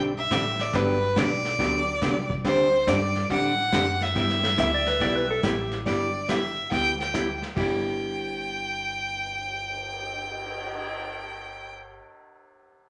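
Bathed in a wet, large studio reverb, this swinging, down-home western swing piece in G major moves at 140 BPM, with a clear, up-front bowed fiddle carrying the melody over a dark, picked hollow-body jazz guitar, a woody, thumpy pizzicato upright bass and a smooth, rolled-off brush kit, while a twangy slide lap steel line appears briefly from 4.6 to 5.8 seconds.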